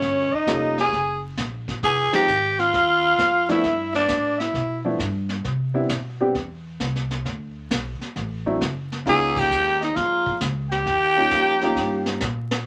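Small-group swing and bop jazz with a sophisticated, warm mood, cut from a longer piece, in which a growling, raspy tenor saxophone carries the melody up front with subtone and scooped notes while a distant trumpet with light vibrato plays a second line above it, both horns dropping out at 4.8 seconds and returning at 9.1 seconds, as a woody, slightly detuned vintage upright piano accompanies from 0.5 seconds, a thumpy pizzicato upright bass and a roomy brush kit with a punchy kick and rolled-off top keep the swing going, the band hits accents together and a closing drum fill rounds it off, set in a small room with vinyl crackle.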